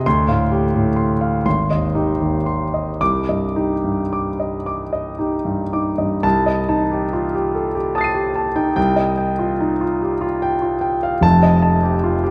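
Nocturnal and wistful, this brief impressionist classical passage for solo grand piano, cut from a longer piece, drifts in 6/8 with free rubato at roughly 35-52 BPM in C minor, its clear, intimate tone sitting up front with audible action noise inside a moderate scoring-stage reverb, as harmonies such as Dm7, Abmaj7 and Cmadd9 give way near 6.2 seconds to Cm6, Ebadd9/C and a closing F9.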